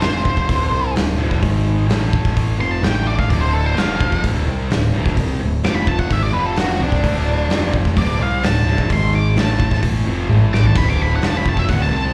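Swaggering and driving, this short live excerpt of blues rock power trio and southern rock is heard through a club PA with light reverb, an octave-fuzz lead guitar carrying a dark, distorted solo with slapback and tape echo across the whole 12.1 seconds. Beneath it, a double-tracked fuzz guitar riff sits up front with its own slapback echo, while a growling, overdriven picked electric bass holds the low end over chords moving mainly between D5, F5 and A5. An oversized low-tuned drum kit, gritty and saturated in a bright stone room with a punchy kick, drives the groove and drops a fill at 10.3 seconds before stopping at 11.8 seconds.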